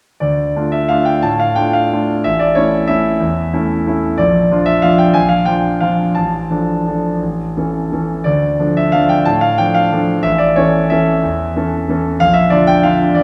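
A wet recital hall reverb surrounds this short cut from a longer classical piece, and the listener seems placed further back in the room, so the hall's decay hangs around each phrase. A solo concert grand piano carries the waltz alone from 0.2 to 13.2 seconds, its tone bright and brilliant with a deep bass reaching down to A1 and a melody rising as high as A5. The playing has a rubato feel inside the three-beat metre, giving the dance a bittersweet, wistful mood. The harmony circles through D minor, A major and B-flat, with a D minor chord over A in the bass leaning back toward A before the opening progression returns.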